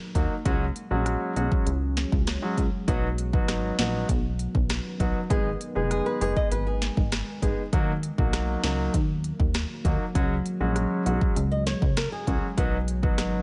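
A digital ambience with a rolled-off top end frames this bouncy, hypnotic dancehall cut at 99 BPM in 4/4, moving through Dbsus4, B, Abm and Ebm. An up-front electronic afro-pop kit with a deep kick, sharp snare and smooth hats plays alongside a punchy, funky sawtooth-and-square analog bass, while an intimate concert grand piano with audible action noise and a dark, detuned chorused pad both pump against the sidechain. A fingerpicked flamenco guitar with fresh strings drifts in through digital delay at 5.9 and 11.5 seconds.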